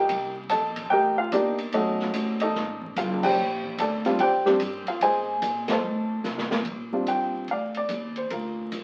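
A dark, mellow baby grand piano carries the melody over thumpy, woody pizzicato upright bass from the start of this sophisticated, warm jazz piano trio fragment at 146 BPM with a swung 4/4 feel, as a distant, roomy drum kit with dark cymbals and a boomy kick joins at 0.1 seconds, marks band accents and plays a fill before a new section at 6.7 seconds, all heard through a small reverberant room and the crackle of a very old 78 rpm record, with the intimate piano up front and its action noise audible.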